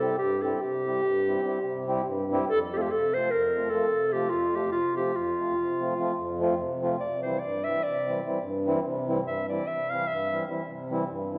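A warm, classical-style clarinet leads up front with a wild, exuberant solo melody until 10.5 seconds, over a reedy, round accordion accompaniment in this Balkan folk excerpt in a straight 11/8, moving from C to F and back to C, all bathed in the long, wet reverb of a scoring stage heard from further back in the room.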